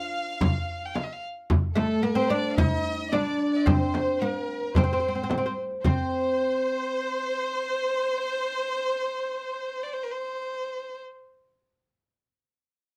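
A woody, fretless oud, plucked with a plectrum and up front, carries the melody of this stately Arabic maqam ensemble passage in C maqam rast at 110 BPM, while a focused solo violin with vibrato and a distant studio violin section behind it add a rich second line, and a clay-shelled darbuka played with soft hands is soon joined by a compressed, saturated frame drum before both drop out at 6.1 s, all under light reverb.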